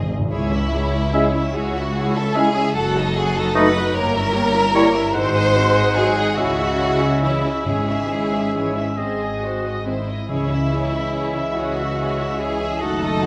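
Classical slow romantic movement for symphony orchestra in C# minor and 6/8, melancholic and solemn, moving with rubato at about 45-51 BPM in dotted quarters, as a brief fragment cut from a longer piece. The violins carry a lush, vibrato-rich melody with a second violin line up front, while a rich viola section, smooth cellos and even double basses hold the bowed foundation beneath them. Very quiet, round timpani under soft mallets open the passage and return at 7.7 s. From 1.1 s a punchy oboe and a clear, close-miked clarinet add second lines, a mellow bassoon fills in accompaniment and a mellow French horn section holds sustained chords, and the harmony passes through diminished chords and G#7 before settling back on C# minor in a moderate scoring-stage reverb.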